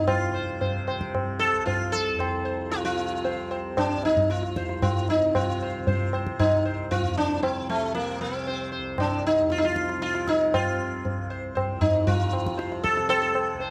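Set in a 5/4 metre with a straight feel at 115 BPM, this Hindustani classical passage gradually speeds up across its 13.7 seconds. The mood is solemn and introspective, rooted in raga Bageshri on C. Up front, the sitar carries the melody between A3 and C5 with a mellow, plectrum-plucked tone, its sympathetic strings giving a buzzing shimmer. Beneath it, the tanpura holds a softly plucked drone from C2 to C3, warm, buzzing and shimmering. The high-tuned tabla enters at 0.1 seconds with a ringing, close and dry sound, while the detailed recording sits in a moderate recital hall reverb, as part of a longer piece.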